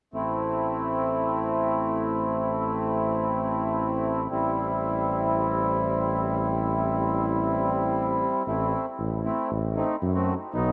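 Klezmer with a festive yet soulful mood, this excerpt pairs a reedy, dark accordion playing smooth accompaniment up front with a warm tuba carrying the bass line in scooped notes, both sounding together throughout. The harmony rests on A minor, shifts to C6/A at 4.3 seconds, and returns to A minor as a new section begins at 8.5 seconds. A huge, wet reverb places the pair in a vast, echoing space.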